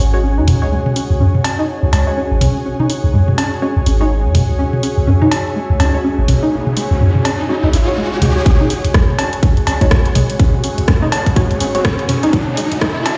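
A swung 16th-note groove at 124 BPM in 4/4 drives this sparse, clinical minimal techno passage in C# minor, cut from a longer piece and opening on a C#sus4 chord. A punchy sine sub bass with a pitch-drop attack sits up front from the start, pumping against the sidechain alongside a twangy, warbling string-like resonator pluck riff run through chorus, phaser and tape echo, while an ethereal airy pad with ensemble chorus hovers above and a very quiet bubbling texture of random filter steps drifts underneath until 8.5 seconds. Muted, detuned dub chord stabs with chorus and digital delay sit in the background, and from 0.5 seconds a garage kit of hi-hat and rim click joins tape-warm electronic toms and cowbell thrown into digital delay. A riser enters at 5.4 seconds, and at 8.5 seconds the second section brings in a tight, layered electronic kick as the build-up begins and a filter sweep moves across the pluck. 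The whole mix sits in a lush hall reverb and carries the stony, high-passed character of a big sound system playing in a bare room.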